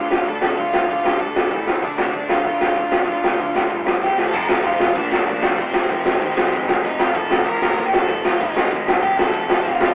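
Rowdy and energetic, this punk rock clip, cut from a longer piece, charges ahead in a straight four-beat drive. A dark, smooth lead guitar carries the melody with an overdriven edge, sitting above two rhythm guitars playing riffs: a hollow-bodied semi-hollow part tucked in the background and a bright, tight distorted part kept very quiet. A growling picked electric bass, direct and amped with a trebly overdrive, sits low and faint beneath them. The raw garage drum kit, coming in at 0.1 seconds, is the most up-front element, with a high-tuned snare, boomy kick, hi-hat and crash captured in a small room with a gritty, saturated, rolled-off tone. A drum fill at 4.0 seconds leads into the second section at 4.3 seconds, where the chords shift toward F, Bb and Ab. The whole mix has the rough feel of a rehearsal-room recording, with tube saturation, a telephone-like quality and light reverb.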